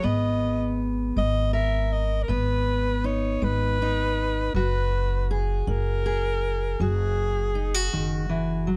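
A slow, straight 6/8 pulse at 53 BPM carries this reflective, intimate acoustic folk fragment in G# minor, moving from G#madd9 to F#add9 at 4.5 seconds. A warm alto saxophone sings the melody up front with classical-style vibrato and a close-miked presence, while a fingerpicked steel-string acoustic guitar accompanies with audible finger squeak and a woody, dark pizzicato upright bass anchors the low end. The sound is dry and close, like a 1970s studio session, and the saxophone drops out at 8.3 seconds as the guitar and bass ring on to 8.8 seconds.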